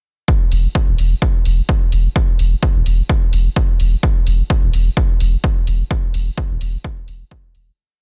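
Opening with a punchy four-on-the-floor analog kick, this deep, meditative dub techno piece is quickly joined together by a soft, round sub bass pumping on the off-beats up front and programmed open hi-hats recorded in a large room. It swings its sixteenths gently within a dense, heavily limited master with little reverb, and fades out from 5.3 seconds until it ends at 7.8.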